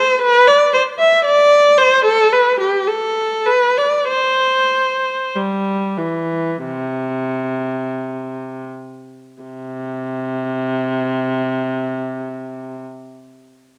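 Heard up front in a moderate recital-hall reverb, this serene, dance-like baroque-style suite movement in C major and 4/4 features a single warm, expressive bowed viola with vibrato and portamento, ranging from C3 to E5 at a rubato 41-59 BPM, slowing through its opening 9.4 seconds before a new section begins, with the viola playing until 12.8 seconds of this passage cut from a longer piece.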